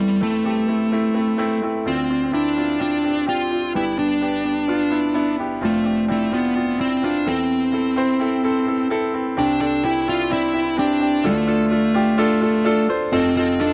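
This dry, close recording has the sound of a 1970s-style studio, touched with light reverb. The cut from a longer pop piece runs at 128 BPM in a straight 4/4, earnest and dramatic in mood. An overdriven electric lead guitar carries the melody up front throughout, its tone dark and smooth with tape echo trailing the picked notes. A bright concert grand piano accompanies it for the full length, brilliant and polished with deep bass and short sustain. The harmony moves from Am/E through Dm7, G and Dm7/F, then shifts at 9.4 seconds to a passage built on Csus2 and Dm before closing on F7.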